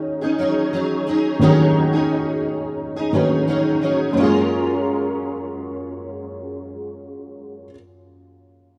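A straight 4/4 pulse at 87 BPM carries this nostalgic, sunny indie pop passage in F# major, cut from a longer piece, moving from a B69/D# chord to F#maj9 at 4.2 seconds. An up-front, full-bodied steel-string acoustic guitar with fresh strings is picked through ensemble chorus and vibrato until 7.8 seconds, over a dark upright piano whose woody, slightly detuned, boxy tone and audible action noise carry on until 8.8 seconds. A moderate plate reverb surrounds this rough home demo, tuned to A4 = 443 Hz.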